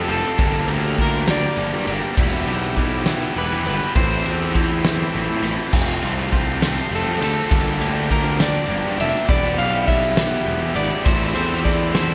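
Indie rock in a straight 6/8 at 67 BPM, this bittersweet, restless passage is cut from a longer piece and cycles twice through a chord sequence that moves from Gmadd9 through Em7 and Am, touching Fadd9 along the way. An electric guitar at the edge of break-up carries the melody with a slightly broken-up, picked tone, while two overdriven guitars, one biting and one crunchy, play riffs in the background. Up front, a growly fuzz bass gives punch to the low end, and a loose indie drum kit enters at 0.1 seconds with a fat snare, punchy kick and dark crash and ride cymbals in a pumping room sound. A grainy egg shaker joins at 0.4 seconds, sitting close and dry behind the band. Underneath it all, a very quiet, brassy analog pad holds sustained, evolving chords with a soft attack, chorus and a filter sweep, and the whole mix is bathed in a wet church reverb with a three-second tail.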